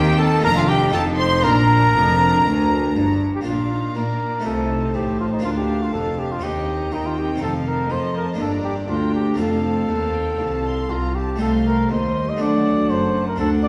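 A mellow, vintage-toned trumpet stands up front as the soloist in this driving, dramatic baroque-style concerto movement, cut from a longer piece, carrying the melody in a straight 4/4. Beside it a harpsichord with a full, plucked, Italian-style sound sits mid-forward in the accompaniment, reaching from deep bass notes into its middle register. A lush symphonic violin section also carries the melody high above from the background, while a smooth, even chamber violin section adds a second line from 0.2 seconds. Below them a focused chamber viola section fills in the harmony, and a clear but distant cello section joins a rich, bowed double bass section to anchor the bass, all the strings playing with vibrato. After a brief opening section the music moves into a second section at 3.5 seconds, and the ensemble is heard from further back in a wet recital hall.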